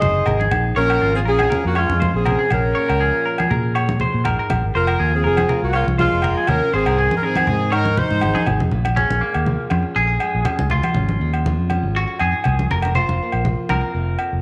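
A lightly swung 16th-note groove at 121 BPM in 4/4 drives this bittersweet highlife guitar band passage in Bb minor, with hard-handed, bright, thin-skinned congas and ringing agogo bells weaving a vintage percussion bed over a dark, round, up-front fingered electric bass. A tight horn section with light vibrato carries the melody in a pop style, then drops away at 8.5 seconds. A short drum fill leads into a new section at 8.7 seconds, where a clean electric guitar solo begins, while a clean, compressed semi-hollow electric guitar, picked and wrapped in slapback echo, keeps up its arpeggios throughout. Beneath it all, a fingerpicked nylon-string guitar with fresh strings adds soft classical accompaniment low in the mix, as the harmony cycles through Ab, Bbm7 and Fsus4. A moderate echo-chamber reverb and small-room ambience give the recording a cozy, warm vintage air, and it is cut from a longer piece.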